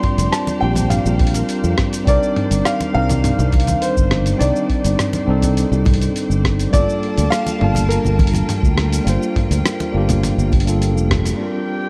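Sunset chillout at 103 BPM in a straight 4/4, this short excerpt from a longer piece feels blissful and warm, moving through Bb69, Cm9 and Gm9 chords. A grand piano with an intimate, boxy tone carries the melody through a digital delay, its action noise audible, while a clean tine electric piano supplies accompaniment, also through digital delay. Behind them a distant, bowed string section holds lush sustained chords with vibrato and a biting edge. The groove comes from a gritty, overdriven sampler-style kit of hi-hat, rim click, shaker and toms, darkened by low-pass filtering and studio reverb, a deep overdriven electronic kick re-recorded in a large room, and close, dry congas played with hard hands in the background. A growly fretless electric bass sits up front from 0.2 seconds, and after a band accent at 11.1 seconds a glassy, drifting harmonics texture with chorus and reverb appears at 11.5 seconds to close the passage in a dark, lightly reverberant production.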